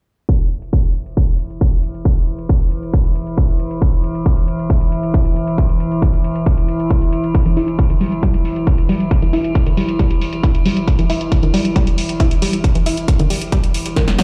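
Heard through a big sound system in a bare room, with a large studio reverb and a low-pass filter over the mix, this excerpt of driving peak-time techno in E minor moves at 136 BPM in a straight 4/4, and a filter sweep runs across its whole length. From the start, a heavy, layered electronic kick sits up front, joined by a punchy analog drum machine whose tape-toned hi-hat and snare sound re-recorded in a small room. At 1.5 seconds an eerie, metallic FM drone fades in slowly, inharmonic and sustained, with chorus, its own built-in reverb and sidechain pumping. At 7.5 seconds a tight sequenced sawtooth riff enters with a fast-attack filter pluck and a mellow edge, treated with chorus, delay and sidechain pumping. The mood is relentless and industrial, and a drum fill lands just before the cut.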